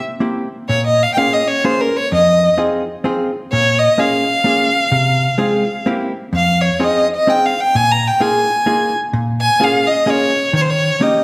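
Bathed in the wet reverb of a church or concert hall, this nostalgic, whirling musette waltz in F minor at 128 BPM, cut from a longer piece, places a dark, clean, compressed hollow-body electric jazz guitar, picking the accompaniment from 0.2 seconds, up front alongside a single clear, smooth, even violin that plays the bowed melody with vibrato from 0.7 seconds, over a lilting swung progression moving through Bbm7, Fm7 and Eb7.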